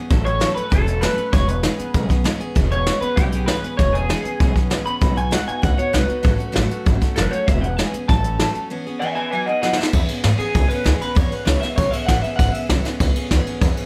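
Light reverb gives this rowdy, retro rockabilly clip an intimate small-room sound, with the brush kit sitting up front. It moves at a straight 195 BPM in E major, with chords of A6, E6 and B6 over a pizzicato upright bass that sounds woody, growly and thumpy. The drums are played with brushes on a kit with dark cymbals, a medium-tuned snare and a boomy kick. A full-bodied dreadnought acoustic guitar picks out bright accompaniment beneath the melody. That melody comes from a twangy, slightly broken-up electric guitar through a small old amp, lo-fi and up front, coloured by lush chorus and analog delay. A short drum fill at 9.6 seconds leads into a clean electric guitar solo from 9.9 seconds until the clip is cut off at 13.9 seconds.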